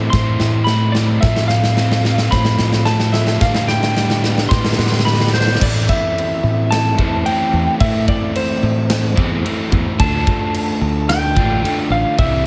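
A straight 4/4 pulse drives this brooding, cathartic post-rock passage, cut from a longer piece, with a big acoustic rock kit sitting up front in a natural, roomy sound of punchy kick, medium-tuned snare and crash cymbal. The opening stretch builds up under a drum fill, while a dark, clean, fingered electric guitar plays arpeggios in the background until it drops out at 5.6 seconds. Over this, a warm, slightly broken-up slide guitar carries the compressed melody through analog delay, and a double-tracked, picked overdriven guitar adds a bright, crunchy riff beneath it. A fingered electric bass with a bright, direct, punchy tone anchors the low end. The harmony moves from Amadd9 through F/A and G/A to Am and later Dm, all set in a generous studio reverb.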